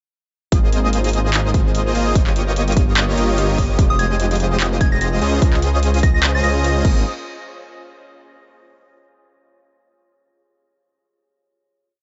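The recording is dry, with its top end rolled off, and it plays as a short, complete future bass piece in Ab major at 147 BPM, moving in a half-time feel with a light swing on the sixteenths. Its lush, bright drop starts at 0.5 seconds and cycles through Ab69, Eb9/G, Fm9 and Dbmaj9 before a final hit at 7.1 seconds. A punchy, tape-warm electronic kick sits up front beside a dubstep kit of claps, metallic hats with rolls, and crash, while a thick, saturated detuned saw bass follows the chord rhythm. Huge supersaw chords in an open voicing hold and push in syncopation, throbbing with sidechain pumping and trailing dub echo. Behind them, an airy, dreamy lead with vibrato and a cassette-tape tint doubles the chords an octave higher, and a very quiet concert harp rings out fingerpicked arpeggios. From 3.9 seconds, a soft, pure FM bell adds short, warbling answering phrases with its own echo.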